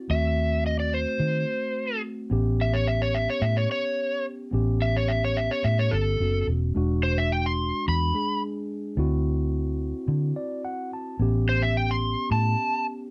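An overdriven slide guitar carries a swaggering, gritty solo across this 13-second excerpt of straight-eighth soul blues at 108 BPM in A mixolydian, backed by a punchy, foam-muted vintage electric bass sitting up front and a mellow tine electric piano that adds a brief fill at 10.1 seconds, all in a dry room.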